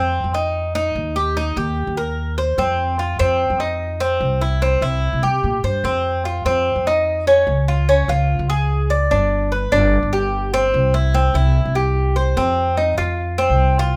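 Moving at a straight 147 BPM in 4/4, this nostalgic excerpt of Cuban son and guajira pairs a picked, metallic Cuban tres, its doubled strings ringing through arpeggios between C4 and D5, with a woody, thumpy pizzicato upright bass on dark gut strings, both up front in light reverb for the full 14.0 seconds as the chords move from F5 through Eb, C, Db and G5, shifting into a new section at 12.4 seconds.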